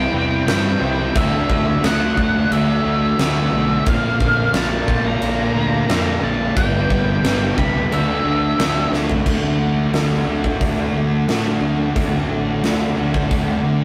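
A huge, up-front arena drum kit with a fat snare, punchy kick and bright cymbals drives this hazy, dreamy shoegaze and dream pop excerpt at 89 BPM in a straight 4/4, its fill at 8.9 s leading into a settled D major passage. Alongside it, a dark, fuzzed-out octave lead guitar carries the melody until it drops out at 8.9 s, while a thick fuzz guitar and a crunchy overdriven guitar play riffs in the background. A gritty fingered electric bass and a very quiet, breathy, chorused pad of sustained chords sit beneath them, all in a rough rehearsal-room recording with warm saturation and a moderate stone-room reverb.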